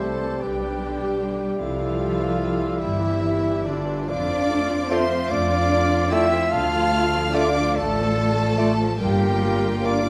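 Solemn and yearning, this slow romantic orchestral movement in 6/8 moves at 49 BPM with uneven, rubato beats, settling into D minor at 4.1 s in a cut from a longer piece. A smooth, distant violin section carries the vibrato melody over a second violin section with expressive portamento, while a hollow flute, clear oboe, soft-attack clarinet and present bassoon add background lines. A focused viola section, tight French horn section, dark trumpet stabs, lush cellos and a close, even double bass section fill out the texture, all bathed in the wet reverb of a recital hall.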